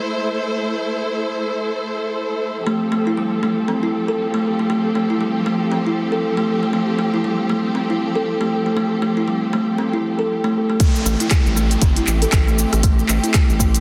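A woody, hollow kalimba stands out in this earthy afro house excerpt at 118 BPM in A minor, entering at 2.7 seconds with short, thumbnail-plucked arpeggios that carry a vintage, band-limited tone, a dub echo and sidechain pumping. Beneath it, a lush, bowed studio string section holds sustained chords from the opening, its vibrato and portamento giving an expressive, distant ensemble sound that also pumps with the sidechain. The harmony moves from Am to Fadd9, then settles on Am7 when the drop arrives at 10.8 seconds. There a deep, layered electronic kick sits up front alongside an afro-pop kit of handclaps, smooth hi-hat, rim click and shaker, swung on the sixteenths, while a downlifter plays in the background. A round, mellow analog bass joins at 11.1 seconds with a fast attack and sustained notes, adding pumping weight under a dense, heavily limited master with light reverb.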